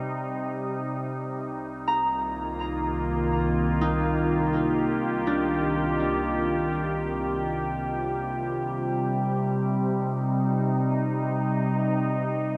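A morphing, warbling wavetable pad opens this melancholic, serene ambient excerpt in free time, holding sustained, chorused Ebadd9/C chords up front, while a ringing, fingerpicked Celtic harp drifts in with diffuse delayed arpeggios from 1.9 to 9.2 seconds, all steeped in a huge, long-tailed reverb and a vintage cassette-tape haze.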